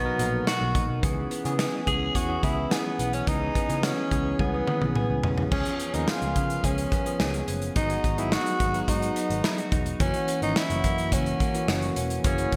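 Uplifting and glossy, this excerpt of 1980s-style pop moves at 107 BPM in a straight 4/4, with a raspy, gritty tenor saxophone carrying the melody up front, using scooped notes, light vibrato and a touch of delay. Beneath it, a bell-like tine electric piano supplies chords from Bmaj7 and C#m7 through C#7, G#m7 and F#7, a compressed clean electric guitar picks a chorus-tinged riff in the background, and a dark, foam-muted picked bass rounds out the low end. A punchy modern drum kit with gated reverb enters at 0.2 seconds and plays a fill from 4.4 to 5.5 seconds into the second section, all set in a bright digital production with lush hall reverb.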